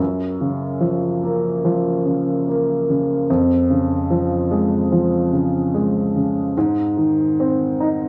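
A lone upright piano opens this short folk fragment, its woody tone sitting up front with a long, ringing sustain. The mood is tender and nostalgic, carried by a straight, unhurried pulse in four. The piano stays in its lower and middle register, moving from F#maj7 to C#/E# at 3.3 seconds and arriving on G# at 6.6 seconds. An analog delay trails the piano's notes, and a wet studio reverb with a short 0.6-second decay softens the space around them. Captured as a home recording on cassette, the sound has an intimate, homespun character, and the passage is cut from a longer piece, ending at 8.1 seconds.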